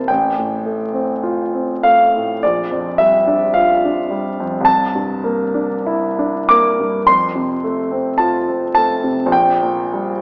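The recording sounds like an old disc played through a small speaker, with vinyl crackle over a wet concert hall reverb that leaves each chord hanging for a moment. Within that haze a lone concert grand piano sits up front, intimate and polished, its deep bass reaching down to A1 while the top climbs to D6, and the soft clatter of its action is audible. This is a romantic nocturne in F major at a slow 45-55 BPM in 4/4, played with a rubato that lets the pulse breathe. The mood is tender and serene, the harmony drifting from F/A through Gm7/Bb to a rich C13 before settling on F at 7.1 seconds and then turning toward Gm/Bb. The excerpt lasts about 10 seconds, cut from a longer piece.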